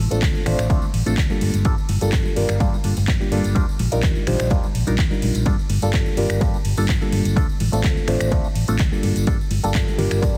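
Filtered disco house with a groovy, nostalgic air, cut from a longer piece and moving through minor seventh and major seventh chords over a straight 4/4 pulse. A punchy, overdriven electronic kick leads the mix alongside a dark, round, foam-muted fingered electric bass that pumps under sidechain compression. Up front, a reedy electric piano shimmers with fast tremolo and phaser, while an overdriven house kit of snaps, handclaps, metallic hats and ride sits behind it and hard-handed tambourine and congas sit further back, all inside a heavily compressed, radio-like ambience.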